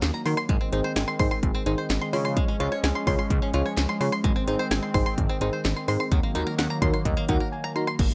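A lightly reverberant sheen opens this short synth-pop excerpt, cut from a longer piece, its nocturnal yet driving mood set by a straight 128 BPM pulse in 4/4. A tape-warm house drum kit sits up front, its punchy kick, cracking snare, metallic hats, handclaps and crash cymbal giving the groove a layered, produced edge. Beneath it, a chorused synth bass mixes pulse and sawtooth waves with a glossy, evolving filter pluck, while a detuned analog pad holds smooth, sustained chords through the chorus effect. A bluegrass banjo picks bright, twangy arpeggios through a delay, and a mellow FM electric piano adds soft, round, warbling accompaniment coloured by chorus and tremolo. The chords move from Ab to Db, back to Ab and then to Ebm, with an electric piano fill from 6.6 seconds leading into a brief break at 7.5 seconds.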